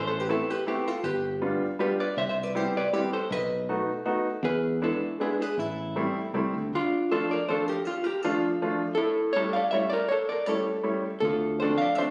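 A musette waltz in three, whirling and bittersweet, cut from a longer piece. A hollow-body jazz guitar carries the melody up front with a dark, clean, fingered electric tone. A clear upright piano enters at 0.3 seconds with close, woody accompaniment, its action noise audible in the intimate, natural sound. A round, direct fingered electric bass anchors the opening phrase, drops out when the harmony shifts at 6.7 seconds, and returns briefly at 11.2 seconds. The chords move through seventh and added-ninth colours before settling into a minor second section. A moderate recital-hall reverb surrounds the parts, and the room pickup gives the recording a phone-caught, compressed quality.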